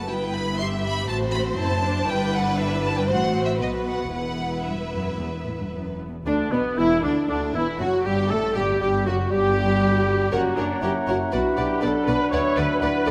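A quick classical-period movement for symphony orchestra, this stormy, restless passage is cut from a longer piece and moves with a flexible, rubato feel. The strings carry the opening alone: a smooth, even first violin section sings the melody with vibrato, a lush, expressive second violin line runs beneath it, and a warm viola section fills in the accompaniment. A dark cello section and a focused double bass section anchor the bass with deep, bowed tone. At 6.3 s the music shifts into a new section and the winds join, with a very quiet, hollow silver flute, a mellow oboe with light vibrato, and a very quiet, dark clarinet each adding second lines, while a background bassoon and a tight French horn section supply accompaniment and sustained chords. The studio-recorded ensemble sits in a moderate concert hall reverb that gives the sound space and depth.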